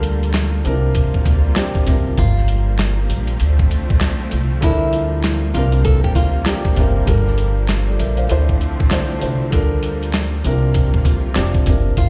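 A dark, moody boom-bap hip-hop groove at 98 BPM in G dorian, swung on the 16ths, cut from a longer piece and set in a stony, echoing room. Gritty, pitched-down sampler drums with a thumpy kick, medium-tuned snare, hi-hat and handclaps sit up front beside a woody pizzicato upright bass, while a mellow, vintage grand piano with short sustain and a lush, bowed string section playing sul tasto with vibrato fill out the chords around Gm7, Dm7 and C7sus4. A small fingerpicked nylon-string guitar, complete with finger squeak and analog delay, carries a brief melody from 2.2 to 6.4 seconds.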